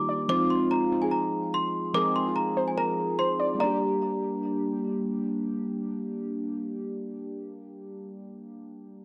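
A worn, bell-like celesta carries the melody up front in this menacing hip hop excerpt at 145 BPM in a half-time feel, its slightly out-of-tune tone touched with digital delay. Beneath it, a dusty, detuned pluck with chorus and delay plays a second line. Mellow, nostalgic lo-fi synth keys with chorus and phaser accompany them from the start, and the harmony moves from Fm7 to Gm at 3.6 seconds. Celesta and pluck both stop at 4.8 seconds, and the keys carry on alone until 9.0 seconds, all under light reverb in a dark, warm production.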